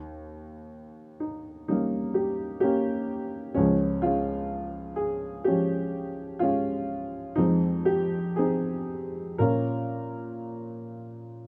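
Dark and reflective, this brief excerpt of lyrical classical solo piano moves at a slow, rubato pace of roughly 54-65 BPM in 4/4, tuned slightly flat to A4 = 438 Hz. A dark upright piano carries everything from 0.0 to 11.5 s, its mellow, woody, slightly detuned and boxy tone sitting up front with short sustain in a small room. The harmony moves from Eb7 through Db and Fm7 before settling on Bbm at 9.4 s.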